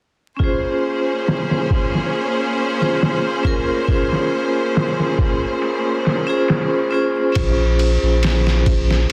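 Dark, hypnotic trip hop cut from a longer piece, built on a Bbm9 chord: a bright, ringing hard-mallet vibraphone with tremolo, filter sweeps and tape echo floats over clear, bowed ensemble strings roughened by 12-bit sampler grit, while a muffled, overdriven sampler-style drum kit with a thumpy kick thuds beneath, and a round sine sub bass enters at 7.4 seconds under a dense, limited master dusted with vinyl crackle.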